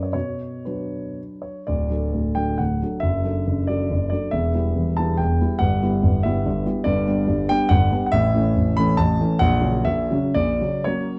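Wistful and capricious, this brief excerpt from a longer romantic classical piece is a triple-time dance in D major, moving in 3/4 with dotted rhythms and a rubato feel that drifts between 106 and 151 BPM. A dark, mellow grand piano plays alone and up front across a range from D1 to B5, tuned to A4 = 444 Hz, with light reverb giving the sound a soft, warm depth. After an opening on B minor, the harmony settles on D at 1.7 seconds and moves through E minor, G and A before landing on F#/A# near 9.4 seconds.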